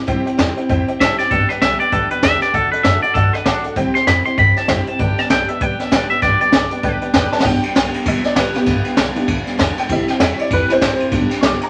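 Rowdy and upbeat, this rockabilly excerpt swings at 196 BPM in G major. A brushed jazz kit with a boomy kick, high-tuned snare and dark cymbals sits up front, and the band also features a thumpy, gut-strung upright bass, a bright dreadnought acoustic guitar and a jangly, detuned honky-tonk piano. A clean, twangy electric guitar carries the melody from 1.0 to 7.0 seconds, and after a drum fill at 7.3 seconds the vintage, woody piano takes a solo from 7.4 seconds, all in moderate studio reverb with a dusting of vinyl crackle.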